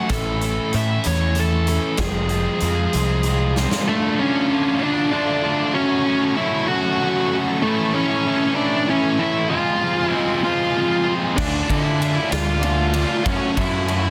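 A dark, fuzz-drenched lead guitar carries the melody from start to finish, its tone thickened by slapback echo and plate reverb, over a brooding and cathartic piece of quiet-loud alternative rock in a rolling 6/8. Beneath it, a double-tracked distorted rhythm guitar grinds out a bright, compressed riff. In the half-time opening, a twangy twelve-string electric guitar shimmers with tremolo in the background while a growling, overdriven bass and a big, natural-sounding acoustic kit with crisp cymbals, a tight kick and a lightly clipped snare drive the passage into a drum fill. At 3.8 seconds a rich, bowed string section enters with smooth, vibrato-laden sustained chords bathed in plate reverb, and the bass and drums drop away, leaving the guitars and strings to carry the middle stretch. The bass and drums return at 11.4 seconds as the harmony keeps cycling through minor and major chords, all within a dense, heavily limited modern mix.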